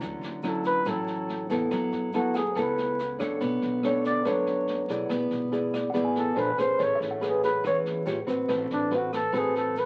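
A straight 4/4 bossa nova groove at 142 BPM in A major sets a sunny, sophisticated mood in this excerpt, with woody pizzicato upright bass and a brushed jazz kit with a boomy kick under an up-front, thumb-plucked nylon-string guitar and a worn, slightly out-of-tune tine electric piano in the background, a grainy egg shaker sitting very quiet, and a mellow flugelhorn with light vibrato soloing from 0.5 s over chords such as Dmaj9, Bbmaj9 and A7alt, the recording wrapped in light reverb and the crackle of a very old 78 rpm record.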